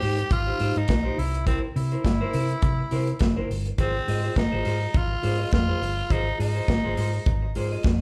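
A growling tenor saxophone carries the melody from the opening beat of this sultry, driving disco piece, cut from a longer performance, at 104 BPM in 4/4 with a light swing on the sixteenths. Its raspy, gritty tone has an edgy pop-style bite and a light vibrato, and it stays between C4 and G4 as a solo voice until it drops out at 7.5 seconds. Beneath it, a clean, picked semi-hollow electric guitar adds warm accompaniment, while a fingered short-scale hollow-body bass sounds dark, round and amped, reaching down to Gb1. The acoustic drum kit sits up front with hi-hat, a tight kick and a medium-tuned snare, sounding smooth with a rolled-off top and a small-room character. The harmony moves from Abmaj7 to C7, then settles on Ab6 as a new section begins at 3.8 seconds, with the band playing live in one room inside a moderate large studio reverb.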